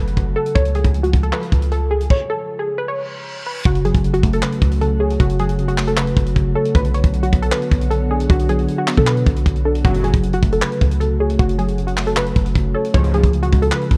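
Hip hop and trap at 155 BPM in a half-time 4/4 feel, this dark, melancholic cut from a longer piece in F# harmonic minor sets a warbly, dusty pluck melody over a glassy, ethereal FM pad, a deep, boomy 808-style bass and a tight acoustic funk kit that sits up front with crash, handclaps, hi-hat and kick. At 2.1 seconds the groove stops, and from 3.0 seconds an electronic reverse cymbal rises into an impact at 3.7 seconds, where muted, intimate felt-like synth keys join the mix. From 9.8 seconds, fat, detuned polysynth stabs punctuate from the background, and the whole recording carries a small-room ambience and the pitch drift of worn cassette tape.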